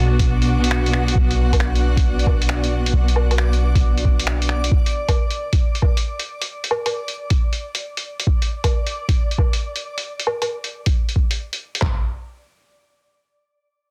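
Future garage at 135 BPM with a 67% swing on the 16ths, melancholic and ghostly, opening on a D/B chord where a clean, twangy electric guitar with tremolo and digital delay sits in the background beside bowed studio strings with vibrato and a round, sine-like 808-style bass, all three pumping against the sidechain until the guitar drops away at 1.4 seconds. A faint backwards swelling texture, granular and detuned, hangs over the start in its own reverb until 8.3 seconds, while from 0.2 seconds two lo-fi sampler-style drum kits, pitched down, muffled and overdriven, carry handclaps, a thumpy up-front kick, toms, finger snaps, hi-hat, woodblock and a soft-clipped snare. After the strings and bass drop out at 4.7 seconds, the texture lingers beside the drums, which run on until 11.8 and 12.0 seconds in a dense, heavily limited mix with light reverb, in this piece cut from a longer work.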